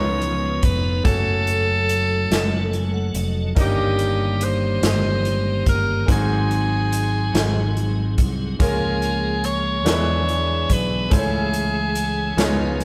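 Recorded live by a band in one room, with a moderate stone-room reverb around it, this slow gospel passage feels hopeful and reverent, and it is cut from a longer piece. It moves in 6/8 at 48 dotted-quarter beats per minute with a straight feel. Its harmony travels from Db13 through chords such as Ab7 and E7 before settling on Amaj7/C#. Up front, an edgy, forceful alto saxophone carries the solo melody in a pop style with scooped notes, over a bright, brilliant concert grand piano with deep bass. In the background, a tonewheel organ holds piping, clean chords with key click, chorus vibrato and a slow rotary speaker, and it plays a fill from 2.3 to 3.6 seconds. A punchy fingered electric bass, direct and amped, anchors the low end, while an airy acoustic swinging big-band drum kit enters at 0.2 seconds with hi-hat, kick drum and a medium-tuned snare.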